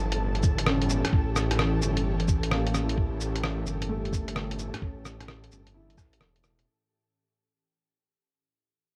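This ghostly, wistful future garage fragment opens on an ethereal, airy pad of sustained, warbling chords with ensemble chorus and built-in reverb, over a menacing, detuned saw bass that evolves through a saturated filter swell up front, both pumping against the sidechain. Far behind them, a grainy, flickering granular texture sits in its own reverb. A lo-fi, sampler-style kit of cabasa, hi-hat and rim click arrives almost at once, muffled and pitched down with small room ambience and a swung feel. A compressed, thumpy electronic kick joins up front at 0.4 seconds, and a felt-muted upright piano enters at 0.7 seconds, soft and intimate with audible action noise, boxy 12-bit grit and tape echo. Vinyl crackle and light reverb colour the whole recording, and the music fades out from 1.7 seconds onward in this short cut from a longer piece.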